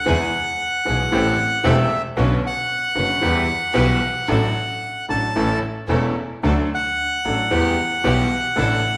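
Playful and passionate, this brief tango excerpt at 113 BPM in a rubato 4/4 sets a reedy, dark bandoneon melody up front over a bright, woody upright piano, a close, focused bowed double bass with vibrato, and biting string-section stabs in the background, all bathed in the wet reverb of a recital hall as the chords move from E through Am7 and Bmadd9 to Em.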